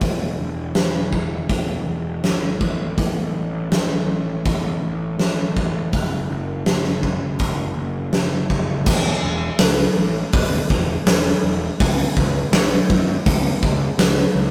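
A big, up-front rock drum kit with a punchy kick, fat snare, hi-hat and crash in a bright stone room drives this bittersweet, restless quiet-loud alternative rock cut at 82 BPM in E major, alongside a growly, fuzz-overdriven picked electric bass low in its register, all captured as a rough rehearsal-room recording with light reverb and warm saturation, and shifting into a new section at 8.9 seconds.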